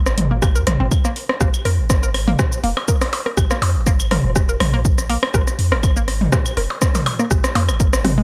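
Minimal techno at 122 BPM in 4/4, with a light swing on the sixteenths, this hypnotic, quirky fragment is cut from a longer piece. A deep sine sub bass with a pitch-drop attack opens at 0.0 seconds, sustained and mellow, pumping against the sidechain between F1 and F2. At 0.1 seconds a house kit of cabasa, bright hats and rim click enters carrying its own grit, alongside a click kit of claves, percussion blips, rim click and toms that sounds re-recorded in a large room, and an overdriven electronic kick sits up front from 0.4 seconds. A hollow, bouncy square-wave pluck with a fast filter snap and short decay carries the riff between Ab3 and Bb4, coloured by chorus, phaser and analog delay and pumping under the sidechain. The production is dry and gritty in a digital ambience, and a drum fill arrives at 8.0 seconds.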